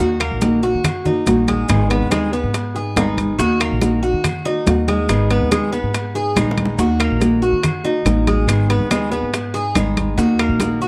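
Dry and close, this recording has the small-room sound of a 1970s studio, and it is cut from a longer Cuban son and guajira piece in Eb minor, moving at 141 BPM in a straight 4/4 with a danceable, warm mood. A fingerpicked nylon-string guitar plays a small-sounding accompaniment, while a picked Cuban tres spins arpeggios on metallic double strings, some doubled at the octave, as the harmony rocks between Ebm and Abm. Up front, the pizzicato upright bass is woody, warm and thumpy, with steel strings. From 0.2 seconds the percussion joins: thick-skinned, medium-tuned congas struck with hard hands, compressed and saturated; ringing metal-shell timbales; and tight, high-tuned bongos sitting very quietly in the mix. Woody claves sound distant, as if in a large room, and grainy, band-limited vintage maracas stay in the background, with a brief drum fill at 6.4 seconds.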